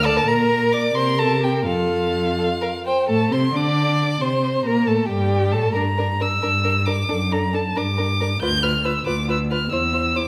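In a 6/8 at 82-93 BPM counted in dotted quarters, with a flexible rubato feel, this cheerful, graceful excerpt from a quick classical-period movement for string quartet is tuned to A4 = 443 Hz and plays out in a recital hall with a wet reverb. An up-front first violin sings the melody high above with rich vibrato and portamento, while a dark, soft-attacked second violin shapes an expressive second line and a focused viola fills in the accompaniment. Beneath them a close, up-front cello anchors the bass with dark, gliding expressiveness as the harmony moves from Bb through Am and Gm to a closing C/E.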